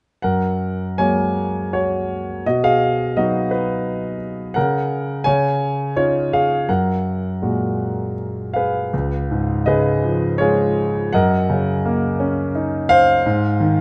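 A clear, up-front concert grand sits in light reverb, its deep bass and natural tone carrying this short passage cut from a longer classical piece. The solo piano plays a tender, peaceful, lyrical line in 3/4 at 84 BPM with a rubato feel, in F# major and tuned to A4 = 444 Hz, ranging from C#2 to G#5. Its harmony moves from F#add9 through B and C#add9, then shifts at 8.9 seconds to C#7 and F#6 before closing on G# at 13.2 seconds.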